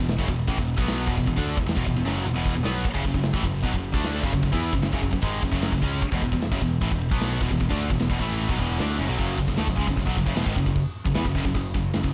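Heavy metal at 152 BPM in F# minor, epic and dark, with two bright, high-gain distorted guitars driving a picked riff, one up front, over a growly picked electric bass in the background and a punchy acoustic rock drum kit with bright china, crash and ride cymbals, snare, toms and kick, drum fills at 2.1 and 9.0 seconds, chords moving from E5 to F#m and back before a new section lands on F#5 at 9.2 seconds, all in a dark studio reverb in this excerpt cut from a longer piece.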